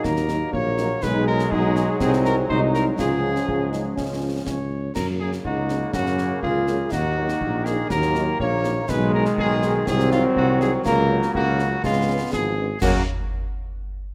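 Proud and festive, this short cut from a longer military-style march for wind band moves at 122 BPM in 2/4 in F# major, with a dark, up-front cornet carrying the melody with light vibrato over a soft-attacked euphonium second line, background trombone chords, a very quiet French horn section entering at 0.3 seconds, a mellow tuba bass, and close, dry concert snare, bass drum and dark-toned clash cymbals, all set in a moderate concert hall reverb.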